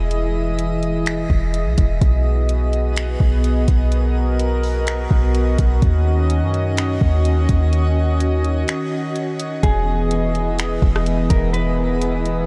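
A warm analog pad holds sustained chords from the opening moment, its smooth sawtooth tone softened by chorus and gently pumping against the beat, while a deep, boomy 808-style bass sits up front with a clean, sine-like punch that decays into darkness. This is atmospheric cloud-rap in E lydian at 126 BPM, felt in a half-time 4/4 groove that gives it a blissful, floating mood. A smooth R&B drum kit of soft kick, finger snaps, rim click and tape-tinged hi-hat carries the rhythm, and far in the background a twinkling granular texture adds a sparkling, octave-up shimmer bathed in its own reverb. The harmony drifts from Emaj7 through B6 to D#m7, and after a short break from 8.7 to 9.6 seconds it returns to Emaj7. At 9.6 seconds a mellow, fingered electric guitar enters with a dark, clean melody trailed by analog delay, carrying this fragment of a longer piece under a light overall reverb.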